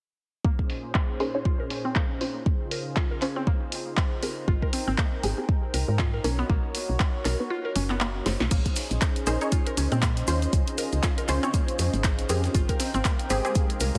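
A swung deep house groove in four sets a moody pulse, driven by a deep, layered electronic kick that sits up front and a punchy analog drum machine of snare, handclaps, hi-hat and crash, its filtered hits carrying a short small-room tail. Underneath, a warm, detuned analog pad holds sustained chords through a Bbm11 to Dbmaj7, Abmaj7 and Bmaj7 cycle, with chorus, tremolo and sidechain pumping. A bright, warbling mallet-like synth pluck spins arpeggios through tape echo under a filter sweep, while a muted, detuned dub chord stab adds decaying hits. A round, woody FM bass arrives at 4.5 seconds, and the kick drops out before a drum fill at 8.3 seconds opens the second section. There a very quiet, gritty sampler-style kit of hi-hat, shaker and snare joins grainy maracas, and a dark, blurred granular cloud pad drifts in behind at 9.9 seconds, all under light reverb and a heavily compressed, radio-like sound in this short cut from a longer piece.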